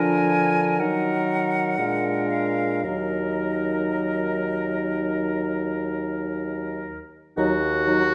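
This classical chamber piece for wind quintet is a slow romantic movement, cut from a longer work. Its mood is melancholic and elegiac, with a flexible rubato pulse in 4/4. The silver concert flute carries the melody above the ensemble, its airy, bright tone shaped with vibrato and a soft attack that sounds deeply expressive. Beneath it the oboe sings a second line with light vibrato, set back and distant in the hall, while the French horn and clarinet hold the accompaniment, the horn roomy with its own vibrato and the clarinet smooth at the top. The bassoon anchors the bass, and all five instruments sound together for roughly eight seconds over harmony that moves through Bb, Ebm and Bb7, wrapped in a wet recital hall and a dark, warm production.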